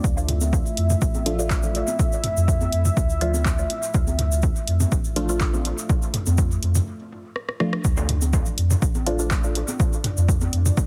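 Dub techno at 123 BPM in D minor, this meditative, nocturnal excerpt from a longer piece rests on a single Dm chord, with a dark analog pad holding sustained, detuned sawtooth chords that pump under sidechain and shimmer with chorus. A round, soft dub sub bass with tube saturation breathes in the same pumping motion beneath an up-front, tape-warm electronic kick, while a grainy tube shaker adds bright, saturated texture throughout. A punchy analog drum machine brings handclaps, hi-hat and rim click soaked in dub echo, joined by layered electronic toms and congas re-recorded in a small room. From 1.3 s a muted, filtered dub chord stab plucks short sawtooth chords through a moving notch, phaser and cassette tape coloring, trailing dub echo until 9.5 s. A break at 6.9 s leads into a drum fill and a band accent at 7.7 s before the section repeats, all captured dry with a heavily compressed, radio-like sound.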